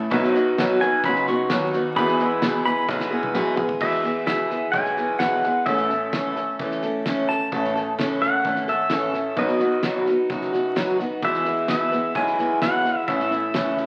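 Honky-tonk and classic country at 130 BPM in E major, down-home and heartfelt, with a boxy parlour acoustic guitar, picked on fresh strings with audible finger squeak, up front, while a clear, short-sustain baby grand piano carries the bass and a damped 70s kit, dry with dark cymbals, a fat snare and a tight kick, adds a fill at 2.9 s. A pedal steel guitar takes the lead throughout, first as warm, compressed, fingerpicked sustained chords with volume swells and slide up front until 3.8 s, joined from 0.8 s by a second, very quiet steel line, bright and twangy with its own slide and swells. The whole passage sits in a wet, large studio reverb under the crackle of a very old 78 rpm record.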